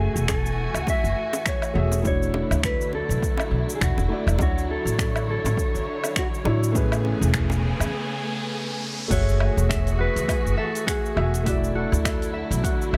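A woody, thumpy upright bass sits up front in this smooth, blissful sunset chillout clip, which is cut from a longer piece and carried by a gentle swing. Above it, a dark, clean electric guitar plays the melody with fingered notes and digital delay. A concert grand piano with deep bass, a boxy tone and long sustain adds accompaniment, roughened by vintage 12-bit sampler grit and its own delay. A distant studio string section holds bowed chords with vibrato, soft attacks and portamento over lush ninth and suspended harmonies. The drums are produced and layered: a punchy electronic kick and a deep house kit of hi-hat, shaker, finger snaps, woodblock and crash cymbal are both treated with overdrive and studio reverb, joined by tight, high-tuned bongos played with hard hands until 7.6 seconds. An electronic riser runs from 6.4 seconds through a short break, and at 9.1 seconds a ringing, fingerpicked concert harp enters with delayed arpeggios as the opening chord returns.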